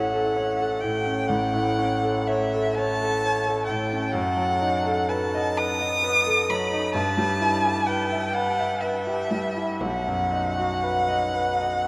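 A warm violin and a bright concert grand piano begin together in this elegiac, solemn romantic classical duo, moving slowly in 12/8 at around 39-45 BPM with a free, rubato feel and tuned to A4 = 435 Hz. The violin carries the melody high in its range with expressive vibrato and portamento, sounding both up front and distant, while the piano's brilliant accompaniment reaches into a deep bass with long, open sustain. A huge, wet reverb places the pair in a vast, echoing space as the harmony passes from F#m/A through B7/F# and Em/G to B, ending at 11.9 s in an excerpt cut from a longer piece.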